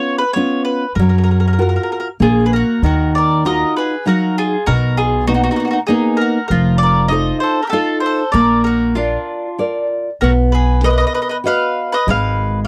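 A dry, close 1970s-style studio sound frames this passionate, wistful Italian serenade in 3/4. A round, up-front picked mandolin carries the melody over the bright fingerpicked classical lines of a nylon-string guitar. A dark, thumpy gut-string upright bass enters at 1.0 seconds, and a second, woody mandolin adds a quieter counter-line from 2.2 seconds as the harmony moves through rich seventh chords before settling on Abm.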